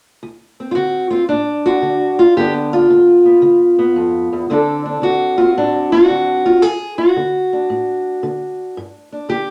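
A fingerpicked steel-string acoustic guitar opens at 0.2 seconds on a D7 chord and carries this short solo piece of acoustic country blues through to 9.5 seconds. The mood is laid-back yet rollicking, set at 113 BPM in 4/4 with a 68 percent swing on the eighth notes. The guitar has a dark, boxy parlour character and sits up front in the mix, ranging from D2 to A4 in D mixolydian. The harmony moves from D7 to G7 at 2.4 seconds, back to D7, and lands on a bare G5 near the close. A moderate studio reverb gives the instrument a modest sense of room, and the passage is cut from a longer performance.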